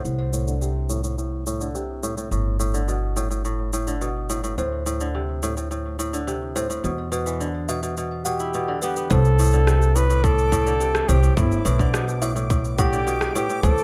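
A kora plays mellow, ringing arpeggios through a filter sweep over thumpy pizzicato upright bass and overdriven electronic shaker and rim click, while a tinkling music box blinks in at the very start and returns as a second line from 4.6 seconds, in this delicate, playful folktronica excerpt at 106 BPM in C major. At 8.3 seconds a breathy, whispered flugelhorn takes the melody up front with light vibrato, and a tight, overdriven electronic kick drum joins at 9.1 seconds. A reversed, detuned swelling texture drifts in the background from 10.2 seconds as the chords move from Csus2 toward G69, all in a lightly reverberant room.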